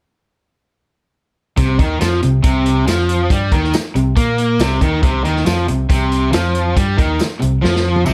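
Driving and confident, this classic rock excerpt kicks off at 1.6 seconds with a bright, overdriven, double-tracked stack guitar riff up front, a growly fingered electric bass and a punchy, natural-sounding vintage drum kit with a small-room feel and rolled-off top, joined by a jingly tambourine in the background from 2.0 seconds, all in a dry setting that closes on a drum fill at 7.6 seconds.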